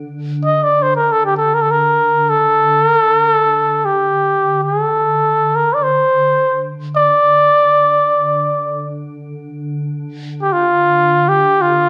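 Caucasian folk in the form of a lament, this short section cut from a longer piece moves in free time in D minor, with a solemn, mournful character. A soft, organ-like pad holds a drone on D3 from the very start, its pure, sine-based tone slightly detuned and thickened by ensemble chorus, with a moving notch that keeps it gently evolving beneath the line. Its slow attack, sustained body and long release, along with its own built-in reverb, give it a calm, mellow presence set well back in the mix. At 0.5 seconds a solo trumpet with a cup mute enters up front and carries the melody between F4 and Eb5 until 11.9 seconds. Its veiled, smooth-topped sound has a soft attack and light vibrato, played in a classical style. A moderate recital hall reverb surrounds the pair, lending the lament a sense of space.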